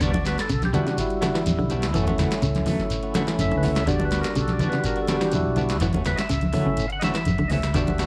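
Defiant and driving, this afrobeat excerpt moves at 124 BPM in a straight 4/4, with an up-front percussive tonewheel organ taking the solo through its slow rotary speaker, its key click audible over Em9 and F#m7 chords. Beneath it, a round, punchy fingered bass and a booming analog drum machine with deep kick, crisp snare and metallic hats set the groove. Bright clean guitar arpeggios, dark tremolo-laced stabs from a semi-hollow guitar, low-tuned congas and a grainy shekere fill out the sound in a moderate echo-chamber reverb.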